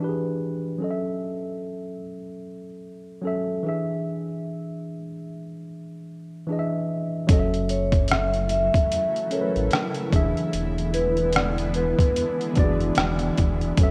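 A gritty, pitched-down sampler-style drum kit of thumpy kick, hi-hat and rim click, overdriven and up front, arrives at 7.3 seconds with a deep sine sub bass in this melancholic, nostalgic lo-fi hip hop excerpt, which swings its sixteenths in 4/4. Before that, a worn, slightly out-of-tune tine electric piano plays its accompaniment alone through a low-pass filter. It is soon joined by a ringing vibraphone melody played with soft mallets and slow motor vibrato, and from 8.1 seconds by a cloudy, detuned granular pad with its own reverb, all in a rough home demo mix with cassette tape character and light digital ambience.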